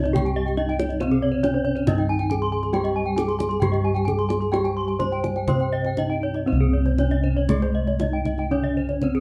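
The bossed gongs stand out most in this brilliant, shimmering Balinese gamelan passage, sitting up front with a round, full, dry bronze tone that carries the bass line from C2 to G4. The tempo moves between 118 and 139 BPM in a straight 4/4, in a C pelog scale. Above them, a bronze metallophone struck with a wooden mallet plays the melody with a ringing, warm sound in a boxy small room. A second metallophone, played with a horn mallet, keeps a bright accompaniment in the background. Two more horn-mallet metallophones weave arpeggios in a high register, one dark and smooth, the other airy and joined at 0.4 seconds, with paired tuning giving every metallophone its beating shimmer. A tight kendang adds percussion, light reverb colours the sound, and the music moves into a new section at 6.5 seconds in this short cut from a longer piece.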